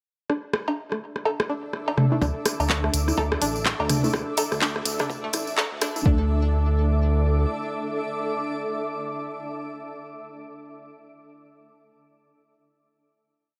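At 0.3 s a twangy, string-like resonator pluck opens this minimal techno piece, its vintage, warbling 10-step loop drifting against the bar through chorus, phaser, delay and sidechain pumping, while a booming analog drum machine scatters rim clicks, congas, cowbell and toms in cross rhythm. A cloudy, blurred granular pad with built-in reverb soon joins, its slowly shifting chords pumping beneath the groove. From 2.0 s hollow, dark organ stabs with tape echo sit in the background, moving one chord shape in parallel. At 2.2 s the build begins: a soft four-on-the-floor kick, a round, deep analog bass in a dotted rhythm and hand-played tambourine sixteenths arrive as a filter sweep moves across the pluck, and at 2.5 s a minimal click kit adds clicky hats and a handclap backbeat. The swung drums have a tape-warm, small-room character, giving the whole track a clinical, hypnotic feel. At 6.1 s the rhythm falls away, the bass lingers briefly, and the pad and organ carry a final chord to the close.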